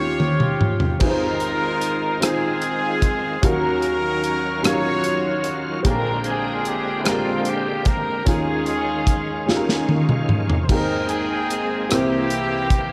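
A bright, forceful trumpet carries the melody up close in a jazz style, sharing the tune with a reedy, gut-string section of bowed strings that sits at a distance, both touched by analog delay. This slow, jubilant and hopeful gospel piece moves in 6/8 at 50 BPM in Ab major. A woody, boxy upright piano with audible action noise and a chorus effect plays the accompaniment. An acoustic drum kit with a punchy kick and medium-tuned snare sits up front, opening with a fill and playing another at 9.5 seconds. A shouting, lightly overdriven tonewheel organ with key click, chorus vibrato and a fast rotary speaker enters at 1.0 seconds with sustained chords over harmony that moves from Eb9 through Ebm9 and Bb13 to Abmaj9 and C7. A long church reverb soaks the mix in a dreamy haze, and the recording is cut from a longer piece at 12.9 seconds.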